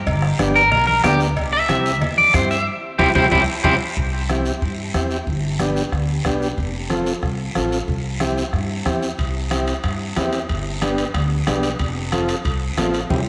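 A joyful, danceable cumbia groove in a straight four drives this fragment of a longer piece: a soft-beater bombo, thick-skinned congas and a raspy, saturated guiro sit beneath a woody, thumpy pizzicato upright bass, while a vintage combo organ with heavy vibrato holds the chords up front, a bright, twangy electric guitar at the edge of break-up carries the melody with spring reverb and tape echo from 0.6 to 3.7 seconds, and ringing, distant cowbell and timbales drop out at that point before returning at 9.2 seconds, all set in a wet echo-chamber ambience.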